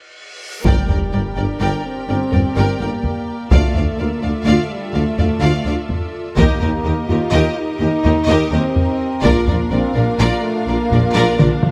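Epic orchestral film score in a heroic, relentless mood, moving in a straight 12/8 and cut from a longer piece. It opens with a drum fill from the taiko ensemble, struck with hard sticks and sounding like a small room, while a huge, bright reverse cymbal rises into an impact at 0.7 seconds that rings until 3.5 seconds. From there the full orchestra takes over, the chords moving from Gm through Dmadd9 and Eb to Bb. The distant, intense violins carry the melody with vibrato over a second violin line and lush violas in the background, while a clear string section holds sustained chords beside the warm French horn section, the most prominent of the pitched parts. Underneath, very quiet cellos, background double basses and a dark tuba anchor the bass, and a light reverb surrounds the ensemble. The taiko drums drive throughout and return with another fill at 11.4 seconds.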